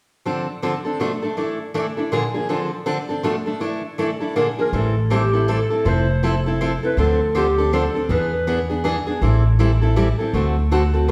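A wet, large-studio sound captures a band playing live in one room on this bittersweet, virtuosic slice of acoustic string swing in 3/4 at 161 BPM in A minor, where a bright, picked steel-string acoustic guitar sits up front as accompaniment, a woody, thumpy pizzicato upright bass enters at 4.7 seconds, and a distant, raspy clarinet with subtone growl, scooped notes and light vibrato carries a brief jazz melody from 4.6 to 8.7 seconds.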